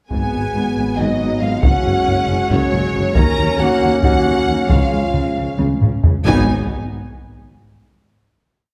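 A relentless, dramatic orchestral cue in the epic film-score style opens at 0.1 s with the full ensemble and a close taiko ensemble pounding a big drum ostinato with hard sticks, all in an urgent 7/8. A lush violin section carries the melody with smooth, even vibrato, while a second, more focused violin line sits in the background doubling the tune at the octave. Violas add a soft-edged glow, shadowing the tune in sixths and thirds, as a tight French horn section and a clear, lightly vibrato trombone section hold sustained chords beneath. The low end pairs cellos, which play a driving bass ostinato against sustained bass notes, with bowed double basses and a very quiet, mellow tuba doubling the bass line. A taiko fill at 5.6 s leads into a final chord at 6.3 s, and the drums ring on until 7.1 s. The whole piece is heard from further back in a reverberant recital hall, giving the complete short theme a grand, spacious sweep.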